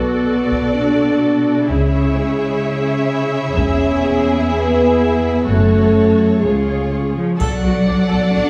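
Set in a straight 4/4 pulse, this cinematic excerpt from an epic orchestral film score feels dark and relentless. A distant, roomy French horn section holds sustained chords over the whole passage, while a rich cello section and double bass section form a lush bowed foundation with vibrato. Above them, a viola section plays smooth, even accompaniment, and a dark violin section adds an expressive second line with a soft attack. Heavy-stick taiko drums, compressed and saturated, sit in the background from 0.5 seconds, drop out, then return at 7.4 seconds. At that point a warm second violin section enters on a single high melody note with a smooth top, joined by a faint, bright triangle. A moderate scoring-stage reverb gives the orchestra a sense of space.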